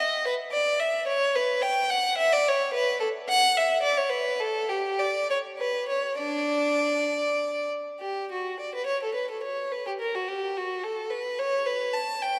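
Classical, baroque-style suite movement for unaccompanied violin, a serene, dance-like fragment in 6/8 at a rubato 63-75 BPM, where a single up-front violin plays smooth, even, bowed lines with vibrato and a rich tone in D major, turning to B minor at 8.0 s, all bathed in the long, wet reverb of a church.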